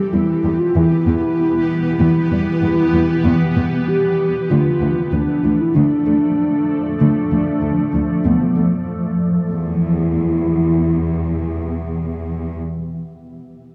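Opening on a hollow, woody clarinet-like synth lead with vibrato over a cloudy, evolving granular pad, this brooding, futuristic cinematic excerpt at 96 BPM in E phrygian moves from Em to Dm and back, carried by a lush bowed cello section up front on the bass line and a tight, driving sawtooth arpeggio with chorus and phaser in the background that drops out at 8.8 seconds, all on a dark scoring stage with moderate reverb.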